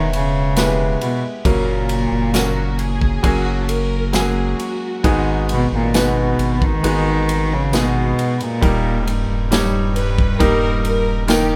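A bowed solo cello with a nasal, earthy tone carries the melody up front over a brilliant concert grand piano and a thick, saturated sub bass, opening this melancholic, longing pop ballad excerpt in G# minor at 67 BPM, moving through E, F#, G#m7 and D#. An airy acoustic drum kit with a punchy kick, medium-tuned snare and ride cymbal joins at 0.1 seconds, a jingly tambourine sits in the background from 0.6 seconds, and a lush, smooth violin section adds a second line from 2.3 seconds. The band sounds as if playing live in one room, with moderate studio reverb giving a polished finish.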